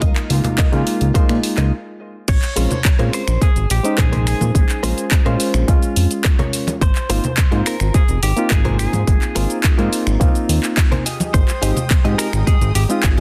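A straight groove drives this sensual, groovy nu-disco passage, cut from a longer piece, with a punchy electronic kick sitting up front and a layered house kit adding warm hi-hat, handclaps, finger snaps, cabasa and crash cymbal, its snare lightly clipped in a small room. Acoustic congas with a thin, hard-handed vintage sound join almost at once. A fat, detuned analog bass carries the low end with a filter sweep and sidechain pumping. A reedy, lightly overdriven electric piano pumps through the chords alongside a clean, picked, direct-recorded guitar riff, both soaked in dub echo. A dark, bowed string section plays soft sustained chords in the background until a brief stop at 1.7 seconds, then returns at 11.3. The drop arrives at 2.3 seconds, where a second twangy, chorused guitar takes up the melody over rich ninth chords, all in a dense, heavily limited, dry mix.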